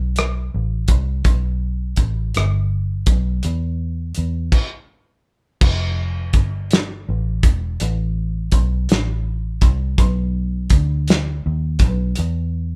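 Slow, sultry six-eight R&B at 55 BPM with a late-night feel, this excerpt from a longer piece pairs a dark, foam-muted vintage fingered electric bass, round and punchy up front from 0.0 to 12.8 seconds, with a cloth-damped, thuddy acoustic drum kit of crash, hi-hat, tight kick, rim click and medium-tuned snare, its cymbals dark and top rolled off, entering at 0.2 seconds, all played live in one small room with light reverb as the music moves into a second section at 5.6 seconds.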